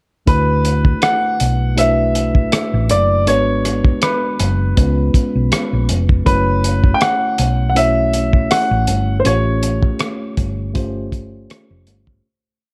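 Romantic and lush, this 1970s-style soul piece rides a smooth, gently swung groove from a muffled, gritty, cloth-damped drum kit with a tight kick, hi-hat and rim click, beneath a round, dark hollow-body bass line with muted ghost notes and slides, while a mellow tine electric piano plays drop-2 voicings at half the chord rhythm and a clear, up-front concert grand states hook-like motif phrases until 10.0 seconds, the whole set in a small, warm-sounding room as the track fades out from 9.3 seconds.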